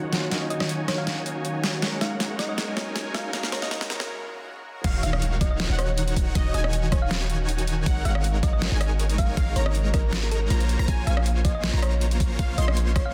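A half-time future bass groove in 4/4 drives this bittersweet, lush passage, cut from a longer piece, with an overdriven dubstep kit of deep snare, rim click, bright hats and crash cymbal playing a fill through the build-up. Huge, detuned supersaw chords run throughout with sidechain pumping, sweeping through a filter during the build-up. They are joined by a faint, worn tine electric piano that sounds slightly out of tune through built-in speakers, a very quiet shimmering ambient pad, and a round, warbling FM thumb-piano-like pluck that carries the melody with chorus and digital delay. A riser and impact enter at 2.9 s, and after a brief break the drop lands at 4.8 s, where a knocking, up-front electronic kick arrives with a boomy sine 808-style bass while a punchy unison pluck plays arpeggios in the background. The harmony moves between Ebm7 and Ab9sus4 before reaching Bbm9, and the dense, heavily limited master sits in light digital ambience.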